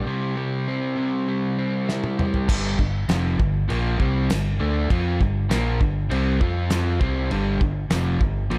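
Lightly reverberant small-room sound frames this gritty, brooding classic rock excerpt at 100 BPM in G minor: two overdriven electric guitars, one crunchy and set back, the other up front, play a riff over a C break until a thuddy, cloth-damped drum kit with dark cymbals and a fat snare enters with a fill at 1.9 seconds, an amped, punchy fingered bass joins at 2.5 seconds as the harmony settles on Gm, and a jingly tambourine sits close and dry in the background.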